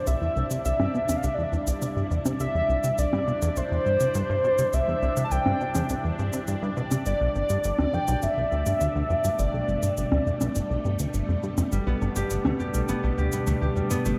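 A vast, echoing cathedral reverb with a long 6.7-second tail surrounds this brief excerpt of ambient, sequencer-driven space music at 103 BPM in straight 4/4, its mood expansive and mysterious as the harmony moves from C to Gadd9 at 7.1 seconds. Up front, a punchy, funky analog bass plays a plucky riff with a fast attack and decaying notes, carried by analog chorus and delay. A shimmering, retro pulse-width lead with vibrato, chorus and delay sings the melody, dark yet full-bodied, until 11.1 seconds. Behind it, a swirling, warbling string machine fades in on sustained chords through ensemble chorus and phaser, while a bubbling, resonant stepped-filter texture drifts in mellow, detuned layers with its own reverb. Overdriven electronic shaker and bongos, re-recorded in a small room and echoed by delay, add percussive color, and at 11.7 seconds a ringing, fingerpicked concert harp enters with arpeggios and delay.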